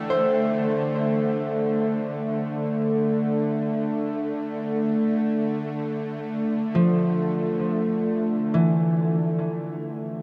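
A bright, nasal bowed-like drone sits up front in this spacious, serene ambient excerpt, built from a tense, evolving unison sawtooth tone with a noise layer, slow attack, long release, vibrato and its own reverb, held low between D3 and A3. Alongside it, a mellow, fingerpicked concert harp plays ringing arpeggios from E3 to G5, also up front and trailed by tape echo. The music moves in free time, tuned to A4 = 441 Hz. The harmony opens on a rootless Gsus4 and shifts to Fmaj7 at 2.7 seconds, holding there until the chords fall away at 9.4 seconds. A huge, wet reverb with a long 8.5-second tail gives the dark production its vast, floating sense of space.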